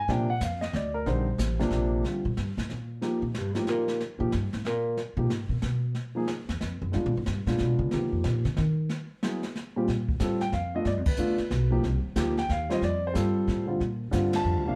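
This jazz piano trio excerpt sits in a wet studio room, heard from further back with a faint mains hum beneath it. The mood is sophisticated and relaxed, swinging at 184 BPM in 3/4, settling into Bb major from 9.9 seconds. A dark, mellow grand piano carries the melody up front, intimate and natural, with its action noise audible. The pizzicato upright bass, woody and steel-strung, also sits close, and the brushed kit adds a medium-tuned snare, boomy kick, hi-hat, ride and crash. The piano takes a solo at the opening, the bass takes a solo from 2.0 seconds, and the full band punches accents at 11.0 and 14.3 seconds over chords moving from Bbmaj7 through G7 and Cm to a closing Bb6.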